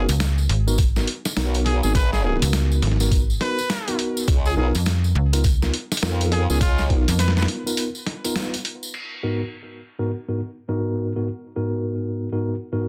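A bright, punchy trumpet carries the melody through vintage 12-bit sampler grit and delay in this gritty, funky glitch hop excerpt at 103 BPM in G# dorian, with a swung 16th-note feel and a dense, heavily limited sound with light reverb. Beneath it, a chorused formant-sweep wobble bass and a snappy, metallic FM slap bass sit up front with a thumpy, pitched-down electronic kick, a tape-warm boom bap kit with filtered hats and a clipped snare, and a jingly tambourine, all over G#m9 and C#13 chords. After a short break and a band accent at 8.4 seconds, the mellow tine electric piano, pumping with sidechain and delay, plays its stabs alone from 9.1 seconds under a filter sweep until 12.9 seconds.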